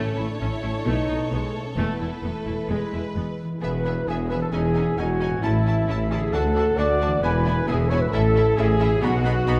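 A straight 4/4 pulse at 133 BPM drives this soaring, triumphant cinematic excerpt, as a lush violin section carries the melody over a second, distant violin line, background violas, expressive cellos, an up-front double bass section, mellow harp arpeggios and sustained chords from a soft-edged French horn section. At 3.6 s the music settles into E major and broadens, adding a close-miked clarinet, an airy, hollow flute, trumpet stabs and a tuba on the bass, with a roomy oboe joining at 4.5 s. Vibrato colours the strings, flute and oboe, and a generous scoring stage reverb bathes the ensemble.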